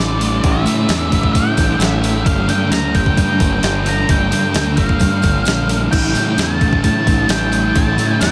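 Hazy and brooding, this short excerpt of shoegaze-leaning dream pop rock moves at 131 BPM in a straight 4/4, drifting from A7sus4 to Gm7 and back. An octave-fuzz lead guitar carries the melody through analog delay over a clean electric guitar riff wrapped in reverse reverb, a thick fuzz guitar riff thickened by analog chorus, and a growling, overdriven fingered bass. From 0.2 s a crisp 8-bit drum machine with a thumpy kick and overdriven edge enters alongside a very quiet, jingly tambourine set far back in the room, all of it soaked in a cavernous cathedral reverb.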